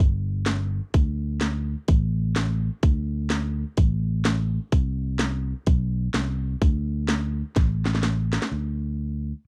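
A fingered electric bass, growly and amped, and a tight garage drum kit open together, both up front in a dark, dry mix that gives this short honky-tonk and classic country excerpt a heartfelt, sunny swing. The layered electronic kit pairs a tight kick with a cracking snare and warm hi-hats, heard as re-recorded in a small room, while the bass sits low in its register. A drum fill arrives at 7.6 seconds before the kit stops at 8.5, leaving the bass to carry on until 9.3 seconds.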